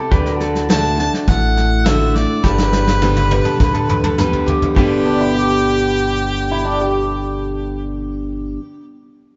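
A nasal, metallic slide resonator guitar, a picked dreadnought acoustic and a bright, twangy pedal steel with volume swells open this easygoing, heartfelt honky-tonk country excerpt at 103 BPM in G major, moving from D to G, joined at once by thumpy, woody pizzicato upright bass and a soft brush kit with a punchy kick that plays a fill from 2.4 seconds before dropping out at 4.9 seconds, while a clear harmonica carries the melody from 0.7 seconds with light vibrato and scooped notes, all heard from further back in a room with moderate plate reverb.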